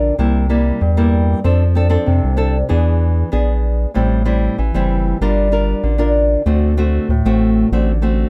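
A round analog bass sits up front, its deep, nasal tone shaped by wave-folding, with a fast attack and long sustain that anchor this short cut from a longer samba and choro piece. Beside it, a fingerpicked nylon-string guitar with fresh strings plays accompaniment in a small, acoustic voice, also placed up front, and both parts run through the full 8.3 seconds. The mood is lively yet bittersweet, moving at 96 BPM in a straight 4/4 feel in G minor, tuned to A4 = 441 Hz. The harmony passes through C7, F6, E7, Am7, Gm7 and D7 within a single section. Close, detailed microphones and very little reverb keep the sound intimate and dry.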